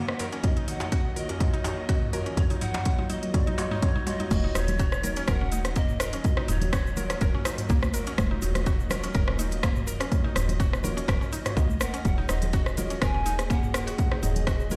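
Warm and spiritual, this afro house excerpt moves at 124 BPM in 4/4 with a gentle swing on the sixteenths, set in E-flat minor over an Ebm9 chord. It opens with a build-up: a breathy, mellow pan flute carries the melody with a bamboo chiff and distant vibrato, while a filter sweep runs across it and across a worn, slightly out-of-tune tine electric piano that plays overdriven stabs in the background. Dark, lush bowed strings hold sustained chords, a woody, mallet-like synth pluck spins bright chorused arpeggios, and an afro-pop kit with smooth hats plays a drum fill as a tight, cracking djembe sits behind until 4.3 seconds. A punchy, overdriven electronic kick sits up front, and at the drop at 4.3 seconds a soft, round FM bass enters with the pumping feel it shares with the strings, pluck and electric piano. Soft-handed congas and a grainy egg shaker join the groove in the background, and the flute returns at 11.6 seconds with its delay trailing. 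The whole mix rings in a bare stone room, as if played through a big sound system.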